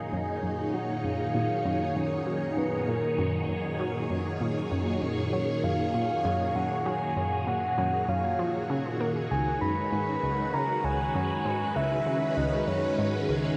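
A swirling, vintage string machine with phaser sustains chords beneath a soft, round, dark octave-layered synth lead carrying the melody with chorus and analog delay, opening this luminous, expansive stretch of sequencer-driven ambient space music. A nasal, wave-folded analog pluck joins at 0.1 seconds with a decaying riff, while a resonant, bubbling stepped-filter texture drifts in the background from 0.2 seconds. A huge, wet reverb bathes the whole mix as the harmony moves from F#maj9 to C#m7 at 9.3 seconds.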